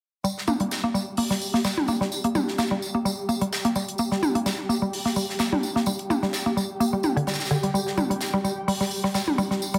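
A woody, round, mallet-like FM synth pluck sits up front with chorus, vintage 12-bit sampler grit and delay, playing a G minor riff under a filter sweep in this cool, clinical minimal techno excerpt at 128 BPM with a light 16th-note swing, alongside a bright, polished gated 80s drum kit of hi-hat, snare and tambourine, overdriven electronic toms with delay from 0.5 seconds, and a flickering, grainy granular texture holding G4 from 0.7 seconds, inside a lush hall reverb.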